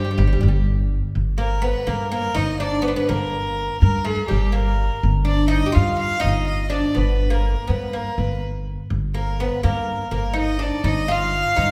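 Heard in a reverberant church or concert hall, this festive excerpt of an Arabic maqam ensemble moves at 124 BPM in a straight 4/4, set in maqam saba on G. A bright, fretless oud with double strings carries the melody, while a nasal violin with light vibrato and an airy bow plays a second line close and up front. A dark, soft-attacked cello section sounds briefly in the background, and from 0.2 s a pizzicato upright bass with steel strings holds the low end prominently.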